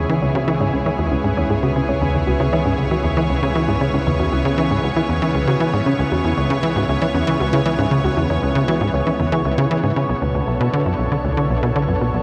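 Ambient, sequencer-driven space music with an expansive, mysterious mood, taken from a longer piece and built on a punchy, nasal sequencer bass riff sitting up front beside a lush, airy unison pad that holds detuned chords. Beneath them, a warbling, vintage analog drone lingers in the background, while a soft, round pluck plays gentle, dark arpeggios until it drops out at 10.1 s, as the harmony moves from C#m7 to Bm7. The pad, pluck and bass shimmer with reverb, the pluck and bass carry tape echo, and a plate reverb gives the whole mix a spacious room.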